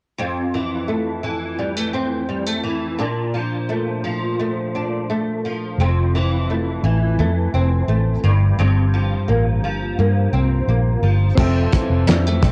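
Sunny and laid-back, this indie and bedroom pop excerpt moves at an easy, straight 86 BPM in F major, opening with a dark, fingerpicked flamenco guitar carrying an ensemble chorus, warbly pitch drift and cassette tape character, with audible finger squeak, through Fmaj7, Bbmaj7 and C7sus4/G. A foam-muted, round and punchy vintage electric bass joins at 5.8 seconds, and at 11.4 seconds the music shifts into a new section as mellow, chorused electric-piano-like synth keys and a muffled, cloth-damped drum kit arrive, its fat snare, tight kick and dark cymbals sounding gritty and saturated. The home cassette recording sits in light studio reverb.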